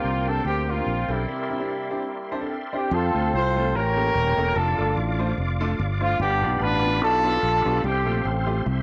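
Gospel at 146 BPM in 4/4 with a light swing on the eighths, this short cut from a longer piece in F major feels hopeful and reverent. A horn section carries the melody with a light vibrato and a roomy, ensemble sound that still sits up front. Underneath, a smooth, vintage-toned grand piano plays accompaniment, and a reedy, clean tonewheel organ holds sustained chords high above, its key click audible and its tone colored by chorus vibrato and a slow rotary speaker. A fingered electric bass, round, dark and direct, anchors the low end prominently. A break arrives at 1.3 seconds, with the piano filling from 2.1 seconds before the second section opens at 2.9 seconds, and the harmony moves from Bb69 and C9 through F, A7b9, Dm/F and G7 back to F. Light studio reverb gives the band a gentle sense of space.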